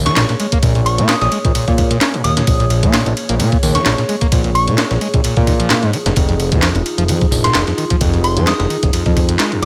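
A swung 130 BPM breakbeat groove in Bb minor drives this raw, swaggering cut from a longer breaks track, with a compressed, sampler-style kit of thumpy kick, high-tuned snare, hi-hat and ride sitting up front, joined by the dry handclaps and hi-hat of a punchy analog drum machine. Underneath, a fat, detuned sawtooth bass holds the low end while a squelchy, distorted acid bass riff with a resonant filter sweep snarls above it, and a deep, moody pad sustains chords under sidechain pumping, moving from Bbm7 to Fm7 at 5.9 seconds. High on top, a soft FM bell melody glints through chorus, phaser, a small-speaker tone and dub echo.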